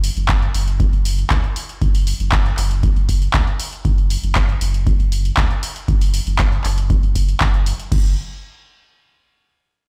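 Acid house with a raw, gritty mood, this short excerpt pairs a thick, saturated sub bass pumping from the sidechain with a punchy, tape-warm analog drum machine of crash, handclaps and hi-hat, joined at 0.3 seconds by a deep electronic kick, all heard through a big sound system in a bare stone room.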